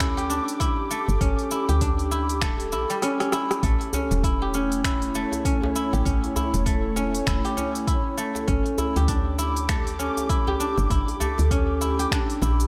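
A swung sixteenth-note groove in 4/4 drives this short organic downtempo excerpt, mystical and hypnotic in mood, built on a deep, tape-tinged electronic kick and an afro-pop kit of finger snaps, smooth hi-hats, rim clicks and shaker set in small room ambience. The kick drops out briefly from 3.0 to 3.6 seconds for a drum fill, and at 3.9 seconds a tight, cracking djembe joins, struck with hard hands. Underneath, a woody FM bass gives round, dark notes with a fast attack that decay, pumping with sidechain compression. Up front, a guzheng played with fingerpicks spins silvery, ringing arpeggios through a digital delay. Behind it all, an ethereal, airy pad of detuned sawtooth and triangle layers with a sub octave holds slow-blooming chords, thickened by ensemble chorus and its own reverb and also breathing with sidechain pumping, while the harmony moves from G5 to A and back to G5.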